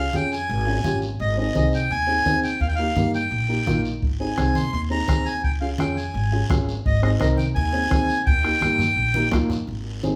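Recorded live by a band in one large studio, this sunny, danceable cumbia sits in a wet reverb, and it is cut from a longer piece. Up front, a reedy, airy accordion carries the melody between Eb5 and C6 until 9.3 seconds, while a dark, boxy upright piano supplies mellow accompaniment beneath it. An acoustic upright bass, plucked pizzicato on steel strings, lays down a woody, warm low end. Bright, low-tuned congas struck with hard hands sit in the background beside a raspy, close guiro, and a bombo played with a soft beater joins at 4.0 seconds. A drum fill from 9.2 seconds rounds off the passage in a straight 4/4 feel.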